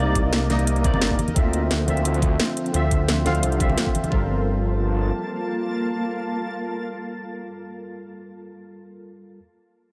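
A straight 4/4 drum and bass groove at 174 BPM in G minor kicks in at 0.2 seconds, with a knocking, layered electronic kick under a cracking snare and metallic hi-hats that sit up front with a tape-warmed, small-room character, while warm acoustic congas join in the background. The mood is lush and melancholic in this liquid style, set by a bright, barky tine electric piano whose clean accompaniment runs through ensemble chorus, a low-pass filter and delay. Beneath it, a menacing detuned saw bass in unison sits low and saturated, its filter swell giving it an evolving edge. A shimmering, ethereal pad holds sustained chords with a slow attack, octave-up shimmer and granular texture, breathing with sidechain pumping inside its own chorus and reverb. The harmony moves from Cm9 to Dm9 before settling on Gm9 at 4.1 seconds, where the drums drop away and the bass and pad drop out in turn, leaving the electric piano to carry on alone until 9.4 seconds, all within a light reverb.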